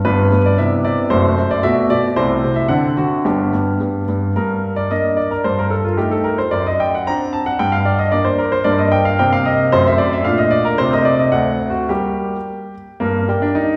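A clear baby grand piano plays alone and up front, intimate and natural, with audible action noise and long sustain. The piece is a classical-period sonatina, elegant and graceful, moving at 111 BPM in a straight 2/4 and spanning F#1 to Bb5. It opens in G major with a poised progression through chords such as Cmaj7, F#dim and D7 before settling back on G. At 4.4 seconds the music turns to G minor, shading the mood with Gm11, Cm7, Bbmaj7 and Cm69 before a D7 leads home to G minor and closes on a bare G5 at 13.0 seconds. The piano sits in the wet reverb of a recital hall, a church or concert-hall space that lets each chord ring, and this passage is cut from a longer piece.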